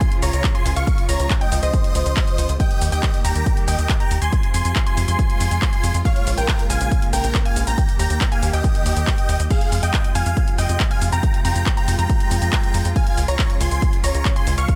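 A driving pulse at 139 BPM anchors this euphoric uplifting trance excerpt in F minor, with a heavy, layered electronic kick sitting up front and a techno kit of crash cymbal, handclaps, shaker and warm hi-hats adding tape-warm texture from a small room. A tight, punchy sequencer bass built from sawtooth and square waves enters at 0.2 seconds, its fast-attack filter plucks decaying between Bb1 and F2 under sidechain pumping. Above it, a huge detuned supersaw lead carries the melody from Ab4 to Db6, full-bodied and compressed, pumping against the kick and trailing dub echo. A bright, lush unison pluck with a noise layer and filter sweep sits in the background as a second line, also pumped and echoed, while a rich bowed string ensemble with vibrato holds sustained chords lower down. The harmony moves Db, Eb, Fm, Bbm7, Eb, Fm and back to Db, and the whole mix stays dry and close with little reverb.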